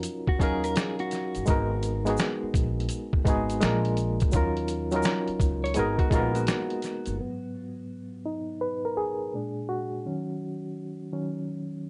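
A sampler-style trip hop drum kit sets a swung 84 BPM groove in 4/4, its pitched-down, muffled sound carrying a thumpy kick and medium-tuned snare, while a grainy tube shaker sits in the background of this reflective, melancholic lo-fi hip hop excerpt in G# dorian. A barky, reedy electric piano with light overdrive, fast tremolo and cassette tape colour comps over D#m7, G#m9 and A#7 changes, joined from 0.3 s by a woody pizzicato upright bass and a dark, clean electric guitar line fed through tape echo. At 7.2 s the drums, shaker, bass and guitar stop, leaving the electric piano to solo under a filter sweep until 11.9 s, all in a small, moderate room with a softened top end.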